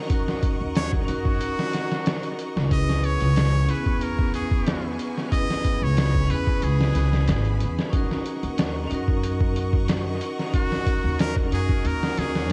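This trip hop excerpt moves at 92 BPM in Eb phrygian, with a smoky, dark mood and an echo-heavy mix flecked with vinyl crackle. A hard-mallet vibraphone opens with a metallic, ringing accompaniment coloured by harmonic tremolo, vintage 12-bit sampler grit and tape echo. Behind it, a bright symphonic violin section holds lush, intense sustained chords with vibrato. The sampler-style drum kit enters at 0.1 seconds, up front, compressed and pitched down, with a muffled, thumpy kick, a medium-tuned snare and hi-hat run through analog delay. A woody, gut-strung upright bass joins at 0.6 seconds with tube-saturated pizzicato. At 0.8 seconds a nasal, brilliant trumpet with straight mute takes the melody, its pop-style vibrato trailed by dub echo, over chords that move from Ebm7 to Dbm7 and back.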